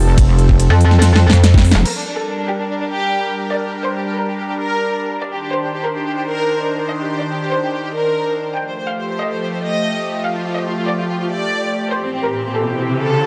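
This heavy wobble dubstep excerpt in G minor opens mid-drop at 143 BPM in a half-time feel, with a lush, detuned supersaw pad carrying phaser, sampler grit and sidechain pumping beneath a pulsing, overdriven wobble bass. A metallic, FM-toned second wobble bass, a knocking electronic kick and an overdriven kit with punchy snare, crisp hats, crash and ride drive a drum fill and a band accent at 1.7 seconds. Once the basses and drums stop, a clear, bowed violin section enters at 1.9 seconds with vibrato and dub echo over the pad through Gm, Cmadd9, Fadd9 and C, until a riser at 12.3 seconds caps the dark, chaotic, aggressive mix.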